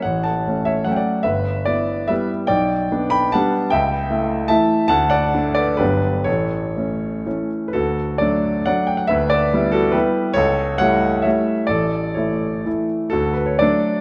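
Dotted rhythms in a rubato triple-time lilt drive this proud, rustic romantic classical dance for solo grand piano, its smooth, vintage tone sitting up front in a moderate concert hall reverb as the passage moves from an opening phrase into a contrasting second one at 7.7 seconds before it is cut from the longer piece.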